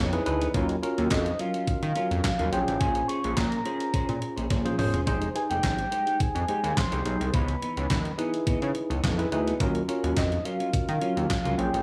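Light reverb gives this slick, danceable early-eighties boogie funk excerpt a polished studio air at 106 BPM in straight 4/4, tuned to A4 = 439 Hz, as it moves through Dbm9, Ebm9, Bbm9 and Fm9 chords. Up front, a crisp 8-bit digital drum machine with a thumpy kick, fat snare, handclaps, hi-hat and toms sits in gated reverb and plays a fill at 4.5 seconds. Beside it, a glossy, retro synth bass mixes pulse and sawtooth waves with pulse-width modulation, a filter sweep and chorus. A tine electric piano heard through its built-in speakers carries the accompaniment, and a clean, fingered semi-hollow guitar riff with analog chorus sits in the background. On top, a soft, round, dark octave-layered synth lead with sub octave, vibrato and chorus sings the melody between Db5 and Db6.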